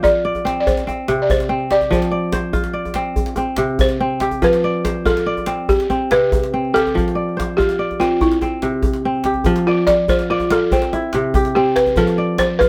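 A woody, buzzing balafon played with soft rubber mallets carries the melody through a plate reverb, taking a solo from 9.5 s in this joyful, flowing piece of West African string and xylophone music at 96 BPM in 12/8, set in F lydian. Up front, a mellow, ringing kora is fingerpicked in arpeggios, while a tight, cracking djembe with metal rattles is struck with hard hands. The whole sits in a light reverb and moves mostly between F and C chords.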